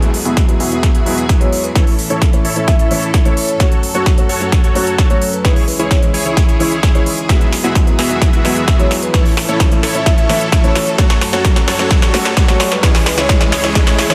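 A punchy, tape-warm electronic kick sits up front from 0.4 s in this triumphant, uplifting festival progressive house build-up, cut from a longer piece, where a drum fill of crisp hats and snare from the big-room kit drives alongside a huge, detuned supersaw riff under a filter sweep, with a dark concert grand piano, lush background strings and a very quiet riser all pumping or rising in the mix, while a metallic vibraphone melody rings through dub echo from 1.4 s over an Eadd9, A, F#m, C#m progression in light digital ambience.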